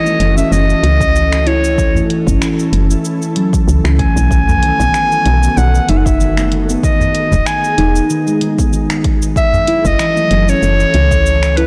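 Earthy and mystical, this organic downtempo piece in F# dorian moves at 95 BPM with a light sixteenth-note swing, as a bright, up-front clarinet carries the melody over ringing steel tongue drum arpeggios with delay, an ethereal pad with chorus and sidechain pumping, a woody, round FM bass, a deep house kit of cabasa, finger snaps and hi-hat, a punchy electronic kick entering at 1.0 seconds and a small, dry udu in the background, all through a blown-out, overdriven sound with small room ambience and chords moving from F#m7 through B7 and Emaj7 back to F#m7.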